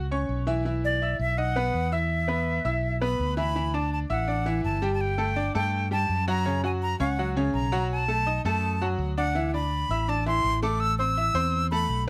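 A bright concert grand piano and a fretless electric bass open this fiery, danceable salsa together at 166 BPM in a straight 4/4. The bass is dark, round and punchy, an amped electric tone sitting up front. The piano has a worn yet brilliant character, with deep bass, audible action noise and an intimate presence. At 0.8 seconds a silver concert flute takes the melody, airy and crisp in attack, with vibrato and a somewhat unsteady quality. The harmony moves from Bsus4 and B to E5 before a new passage at 3.6 seconds runs through Dadd9, Gsus2, F#, B7 and Dsus2, landing on Am. Captured close and detailed with little reverb, this short passage is cut from a longer piece.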